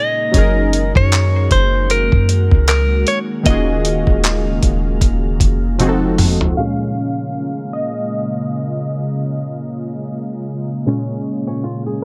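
A lazily swung 77 BPM groove in 4/4 carries this longing, late-night contemporary R&B excerpt in Bb minor, where a gritty, tape-warm sampler-style kit with a thumpy kick, handclaps, hi-hat and toms and a deep, boomy 808-style sine bass drive the first half. A clean, direct-recorded electric guitar sings a short melody through delay, round, detuned analog keys with chorus comp beneath, and a glassy, warbling FM pad pumps and shimmers throughout, while a barely audible, bell-like celesta glints briefly. After a drum fill, the keys take a solo under a filter sweep from 6.6 seconds, and a bright fingerpicked flamenco guitar slips in arpeggios with finger squeak at 11.5 seconds.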